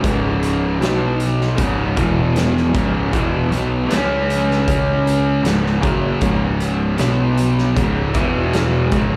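A double-tracked fuzz guitar riff opens this ominous, sludgy stoner and doom metal fragment, sitting up front alongside a growly, punchy picked bass and an oversized, low-tuned acoustic kit with a boomy kick and fat snare, all three starting together. The guitar's riff moves through C#5, B5 and E5 power chords and settles on a long C#m before returning, its distortion carrying a slapback echo while the bright, overdriven bass growls beneath. The whole performance sounds like a live club gig heard through the venue's PA, with a small room ambience, club reverb, and a saturated, gritty pumping room around the drums.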